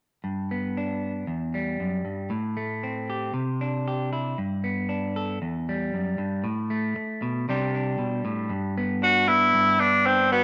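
Danceable and joyful, this highlife fragment opens at 0.2 s with a clean, twangy electric guitar picking out chords with a cassette-tape tint, joined at 9.0 s by a punchy, forceful tenor saxophone with vibrato that steps up front for a bright solo, the scene bathed in wet spring reverb and the small-room ambience of a home cassette recording.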